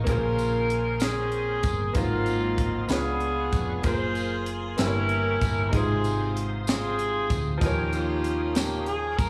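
Soulful and uplifting, this slow gospel passage in 6/8, cut from a longer piece, sets an up-front, smooth-topped saxophone section with jazz-style vibrato over a brilliant, worn grand piano with slapback echo, a reedy, lightly overdriven tonewheel organ turning on a fast rotary speaker with key click, a dark, round hollow-body electric bass, a crisp fusion drum kit with a high-tuned snare and punchy kick, and a jingly, distant tambourine, all heard through a club PA in a small room, moving through rich chords from Bbm9 to Eb9.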